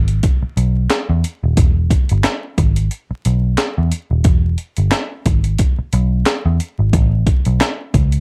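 A lightly swung sixteenth-note groove in four drives this short, energetic funk fragment, cut from a longer piece. A gritty, compressed breakbeat kit with a thumpy kick, a high-tuned snare, hi-hat and handclaps sits up front beside a dark, round, foam-muted picked electric bass played through an amp and kept low in its register. The sound is dry and close, with vinyl crackle running underneath.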